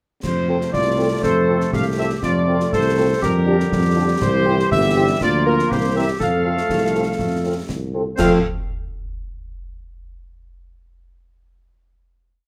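Spirited and festive, this short military-style march for wind band in F major strides along at 121 BPM in a straight 2/4, with a clear, up-front trumpet section carrying the melody over warm trombone sustained chords in the background, a mellow, distant tuba on the beats, mellow French horns adding after-beat chords from 0.5 seconds, a mellow woodwind counter-melody joining at 0.7 seconds, and close, dry concert snare over bass drum on the beat with dark clash cymbals, all set in a moderate large studio reverb before closing on a final chord at 8.2 seconds.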